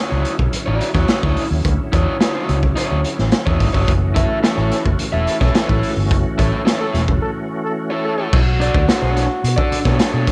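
Funk at 108 BPM in B minor, driving and sly, built on a gritty, up-front garage drum kit with dark cymbals and a punchy kick, a round, foam-muted fingered bass, overdriven picked guitar with spring reverb, and a reedy tonewheel organ with key click holding chords through a slow rotary speaker until 8.3 s, while a clear trombone enters at 6.8 s as a band accent and break lead into a closing Bm9.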